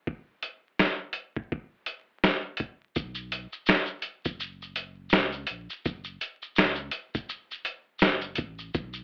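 A compressed, muffled lo-fi sampler-style drum kit sits up front in this mellow, cosy lo-fi hip hop excerpt at 83 BPM with a lazy 16th-note swing, its thumpy kick, medium-tuned snare, hi-hat, shaker and finger snaps carrying a tape-warm, small-room feel, before a deep, sustained sine sub bass with octave enters at 3.0 seconds, all wrapped in a rough home-demo mix with vinyl crackle, an AM radio tone and moderate reverb.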